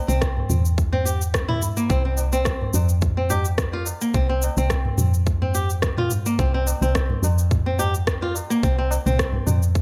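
Organic downtempo in C major at 107 BPM, this hypnotic, meditative passage is cut from a longer piece and sways on a light 16th-note swing in 4/4. Up front, a fingerpicked flamenco guitar with fresh strings and a boxy tone plays arpeggios between Bb3 and G4, its finger squeaks audible and a digital delay trailing its notes. Beneath it, a woody FM bass sits equally forward, round and dark with a fast attack that decays, moving between C2 and F2 under sidechain pumping. An overdriven electronic kit of rim click, shaker and toms, re-recorded in a large room, joins a tight, overdriven electronic kick that enters at 0.2 seconds, while a high-tuned tabla with a short ring stays close and dry in the background. The harmony rests on C before shifting to Csus4 at 1.9 seconds, all within a light reverb.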